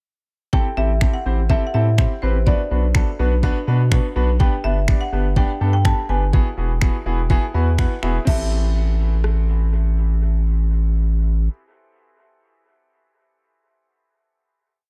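Energetic yet bittersweet, this short dance-pop piece moves at 124 BPM in a straight 4/4, set in A dorian over a verse that cycles Am7, Bm, G and Eadd9 before settling on a final Am7 chord at 8.3 seconds. An electronic, layered pop drum kit sits up front with an overdriven edge, driving a four-on-the-floor beat built from a knocking kick, finger snaps, rim clicks and crash cymbal, and it drops out at 9.4 seconds. A round analog bass, deep and slightly nasal with a fast-attack filter pluck and sidechain pumping, plays off-beat lines from 0.8 seconds. A brilliant concert grand piano lays down close-voiced eighth-note chords with short sustain and dub echo, adding a fill just before the closing chord. Above it, a woody marimba struck with hard mallets carries a dark, smooth, motif-based melody of call phrases, also drenched in dub echo, all within a small-room, echo-heavy mix.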